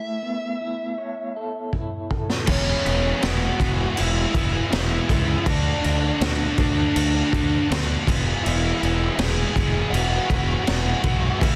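Quiet-loud alternative rock with a restless, anthemic mood, cut from a longer piece. It opens on a hushed break where an electric guitar through a small old amp picks slightly broken-up, compressed arpeggios colored by tremolo and tape echo, beneath a dark, overdriven lead guitar carrying the melody. A raw garage drum kit bursts in with a fill at 1.7 s, its high-tuned snare soft-clipped and its boomy kick booming, the whole kit sitting up front in a gritty, small-room sound with a rolled-off top. At 2.5 s the arrangement turns loud: a bright, double-tracked high-gain guitar drives the riff while a growly fuzz bass, fingered and pushed through overdrive, fills the low end, and the arpeggiated guitar stops. The lead melody carries on over the full band to the end, with little reverb and a dense, heavily limited master keeping the mix close and tight.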